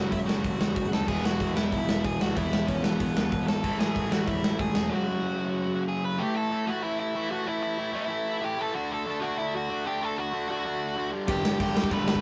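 A straight, driving 4/4 pulse at 188 BPM propels this energetic, upbeat punk rock fragment cut from a longer piece, where a dark, smooth overdriven lead guitar carries the melody up front over a bright, crunchy picked riff guitar, a sludgy distorted guitar in the background, a fuzzy bass, a barely audible double-tracked garage guitar and a punchy, big-room acoustic drum kit with crash, hi-hat and snare, as the drums and bass drop out at 4.8 and 4.9 seconds, leaving the guitars over chords moving through F#5, A5 and D to G before the full band returns at 11.3 seconds, all captured as a rough rehearsal-room recording with light reverb.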